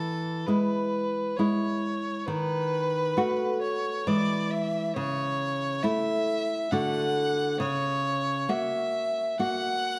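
Romantic violin and classical guitar duo in a lyrical, serene 3/4 at a rubato 67 BPM, cut from a longer piece: a single bowed violin sings the melody with a rich, focused tone and vibrato over fingerpicked nylon-string guitar accompaniment with a woody, old-string character, both up front in a dark, warm mix with moderate scoring-stage reverb.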